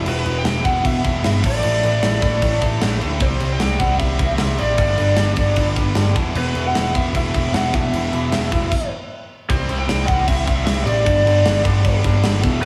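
A big arena sound with a lush hall reverb frames this menacing, heavy hard rock excerpt at 153 BPM in E minor, where a double-tracked overdriven rhythm guitar riff, a growly, punchy picked bass, a lo-fi lead guitar through a small cranked amp carrying the melody with slapback echo and digital delay, and a tight metal drum kit with bright cymbals all play from the start, halt together in a stop at 8.7 seconds, and crash back in at 9.5 seconds.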